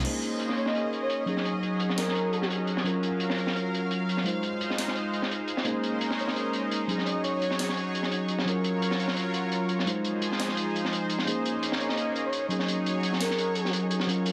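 A melancholic, rolling stretch of liquid drum and bass at 171 BPM in Bb minor, cut from a longer piece and tuned slightly below standard pitch. A mellow tine electric piano carries the accompaniment up front from start to finish, run through tape echo and a low-pass filter that sweeps across the whole 14.3 seconds, while a lush, warbling unison pad of detuned sawtooths holds thick, slow-blooming chords with chorus alongside it. The harmony circles through Bbm11, Ab7sus4, Gbmaj7 and Fm7. Driving it all is a crunchy, dark breakbeat kit from a small room, with a saturated, high-tuned snare and filtered hi-hats, while a second sampler-style break, pitched up, gritty and re-recorded in a large room, adds crash and hi-hat hits in brief flashes after its opening two seconds. A breathy, flute-like synth lead with vibrato, chorus and digital delay sings short phrases between Bb4 and Eb5, first entering at 0.6 seconds and returning around 6.2 and 11.8 seconds. 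The whole sits in a moderate concert-hall reverb with a dense, heavily limited modern master.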